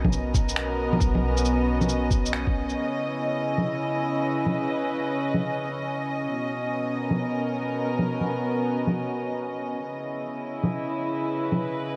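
A melancholic, nocturnal future garage excerpt opens with a dark, reedy string section sustaining chords with light vibrato and a gut-string, period-style tone, pumping against the beat. Underneath, a soft, round 808-style bass with a sine-like, decaying tone pumps along, while a thumpy, pitched-down sampled kick and compressed electronic bongos, shaker and finger snaps add a swung, tape-flavoured groove, the percussion softened by low-pass filtering and a small-room character. The whole band hits an accent at 2.3 seconds, the kick drops out at 2.5 seconds, and the bass falls away at 2.8 seconds as the piece moves into a new section. From there the bowed strings and filtered hand percussion carry on alone, alternating between Bmaj7 and C#m9 harmonies. A huge ambient reverb with a long, lingering tail surrounds the sound and lends it a hazy, late-night atmosphere.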